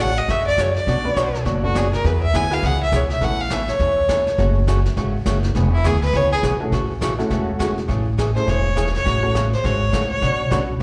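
A clear, earthy fiddle opens this cheerful, down-home western swing excerpt, carrying a bowed second line with light vibrato and a slapback echo until about 6.4 seconds. Beneath it, a thumpy upright bass with gut strings sits up front, while a dark, clean hollow-body archtop guitar adds compressed, picked accompaniment, and a brushed drum kit with a boomy kick keeps a lively swung pulse. A detuned, jangly honky-tonk upright piano joins at 1.0 seconds, its vintage tone also touched by slapback. At 8.4 seconds a rich, expressive violin takes the melody, singing with vibrato and portamento. The whole band sounds like a live gig heard through the venue's PA, with the reverb of a recital hall around it.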